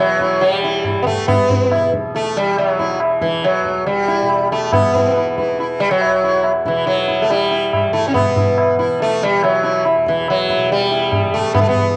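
A steady, straight four-beat pulse carries this short Hindustani classical excerpt from a longer piece in raga kafi, and its mood is meditative and introspective. The tabla enters at 0.2 s. It is low-tuned, with a short ring, and sits distant in a large room. Up front, the plectrum-plucked sitar carries the melody in a round, buzzing voice, its sympathetic strings shimmering. The sitar also carries a cassette-tape colour. Underneath, a softly plucked tanpura holds a quiet, shimmering drone throughout, with its own buzz. The music shifts into a new section at 8.1 s, and the home recording on cassette is bathed in a moderate spring reverb.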